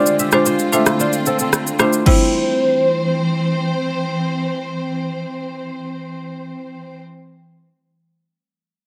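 A hollow, clarinet-like synth lead opens this brief, joyful afrobeats excerpt alongside a woody marimba, a lush bowed string section and a fingerpicked kora. The synth carries the melody with a soft, full-bodied tone and gentle vibrato, colored by chorus, phaser and delay, while the kora's crisp, ringing riff also trails a delay. An electronic afro-pop drum kit sits up front with a deep kick, rim clicks, shaker and crash cymbal, but it drops out at 2.2 seconds, just as the harmony settles from minor-tinged chords onto a bright C major. The synth and kora fall away at 3.6 seconds, leaving the mid-forward rosewood marimba and the smooth, even strings to carry the sunny mood until 7.0 seconds. A light reverb ties the whole together.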